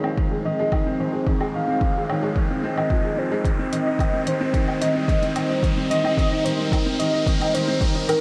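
Hypnotic and moving, this build-up from a longer piano and strings electronica piece puts a clear, woody upright piano riff with digital delay up front beside a velvety, mellow synth lead that carries the melody with chorus and cassette tape colour, while a lush, detuned unison pad with chorus and sidechain pumping holds sustained chords in the background under a filter sweep, electronic woodblock and dark hi-hat fill in the groove, a punchy electronic kick enters at 0.2 s, and an electronic riser runs throughout, all set in a moderate echo chamber reverb as the harmony moves from Fm7 to Eb.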